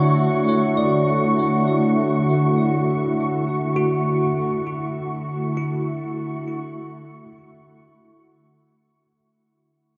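A glassy FM pad opens this serene ambient excerpt at 0.0 seconds, holding a sustained Dmaj7 chord with a slow attack and long release, its ensemble chorus and built-in reverb giving it an ethereal, mellow sheen up front in the mix. Beneath it, an analog drone sits on D3 in the background, a detuned blend of sawtooth and pulse waves with pulse-width modulation and chorus that makes it feel gently evolving. Over the top, a bell-like tine electric piano plays bright, clean arpeggios between E4 and F#5, direct in tone with subtle chorus and delay. The tempo is a slow 50 BPM in straight 4/4, in D major with tuning at A4 = 441 Hz. Everything sits in a vast, echoing cathedral reverb with a 6.4-second decay and a soft top end, and a fade-out runs from 2.8 seconds until the parts stop near 9.2 seconds, leaving a peaceful, floating impression.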